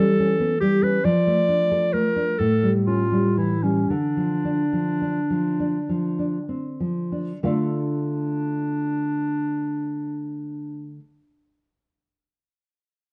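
In a rubato 6/8 that slows through its first 7.4 seconds, this romantic duo for clarinet and classical guitar carries a melancholic, yearning mood, with a new passage opening at 7.4 seconds in this short section cut from a longer piece. The clear, classical-style clarinet sings the solo melody up front with a plate reverb, while the nylon-string guitar, woody and full-bodied on old strings, supports it with thumb-plucked accompaniment through a moody chord progression that settles on D minor. Both sit close in a small room, and the overall production is dark and warm.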